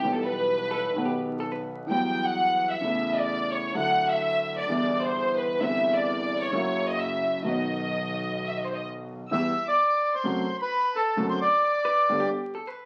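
A bowed violin section, clear and biting with light vibrato and a smooth, intense top, carries this nostalgic, playful tango excerpt up front for its first 9.3 seconds. Beneath it, an upright piano gives dark, woody accompaniment with long sustain, while a single bowed double bass sits earthy in the background. A hollow-body electric jazz guitar adds brief picked, compressed second-line touches at 0.7 seconds and again at 11.8 seconds. At 9.3 seconds a reedy bandoneon steps forward with the melody as the E minor harmony moves toward G. The rubato 4/4 feel at 130 BPM sits in a moderate studio reverb, and the whole is heard through the crackle of a very old 78 rpm record.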